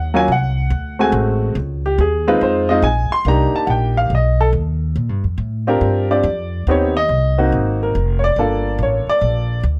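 An upright piano and upright bass open this jazz piano trio excerpt together, setting a sophisticated, swinging mood at 141 BPM in 4/4 with a 65% swing on the eighth notes. The piano carries the melody with a warm, woody tone, ranging from Gb3 up to C6 and given a sheen of plate reverb. The plucked bass sits up front beneath it, its gut strings giving a thumpy, warm low end between F1 and Bb2. The harmony in Bb major moves through rich colours, starting on Ebm and passing through D7#11, Dbmaj7, Cm7 and B before settling on Bb6. From 5.0 seconds the piano takes a solo over Bb6, Cm, Ab9 and Gm9, with the bass continuing to 9.8 seconds. The room sound is lightly reverberant, keeping both instruments close and present.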